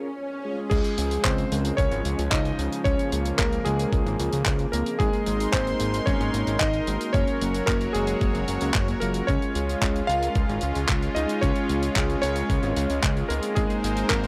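Dry, gritty and close, this short cut from a longer italo disco track sits in a small room and moves at 112 BPM in Db major with a danceable, romantic mood. It opens with a brief electronic swell and dark, round synth brass stabs, which carry on in the background with chorus and vibrato throughout. At 0.7 seconds the full band arrives: a vintage electric grand piano with a clangy low end carries the melody through tape echo, while a smooth, slow-attack analog pad holds chorused chords above a fat, detuned sawtooth bass with a plucky filter and saturated body. A damped 70s kit with a rolled-off top adds hi-hat, handclaps and crash cymbal, and a compressed, thumpy electronic kick sits at the front of the mix. The harmony moves from Db to Abadd9 and Gb before returning to Db and Abadd9.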